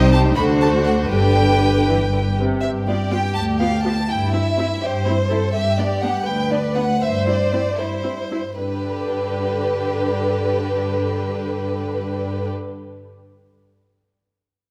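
A string orchestra opens together in a quick, graceful and spirited classical-period movement in 6/8 and G major, moving at 73-84 BPM in dotted quarters. An expressive, vibrato-laden violin melody sits up front over an even second violin line, lush viola accompaniment and a cello bass that is also up front with a smooth top, joined at first by a warm double bass that stops at 2.4 seconds. The pace slows from 4.8 to 8.6 seconds before arriving on a G chord, and moderate scoring-stage reverb gives the ensemble a roomy glow in this excerpt from a longer piece.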